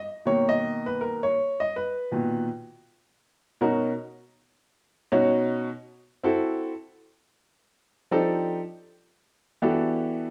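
Hip hop at 80 BPM in 4/4 with a 58% swing on the 16ths, this cool, warm fragment cut from a longer piece features a solo upright piano, woody, smooth and vintage with a short sustain, placed up front and tuned to A4 = 441 Hz, entering at 0.3 s and moving through Bmaj7, Badd9, F#m7b5, F13 and Em11 within a wet stone room reverb.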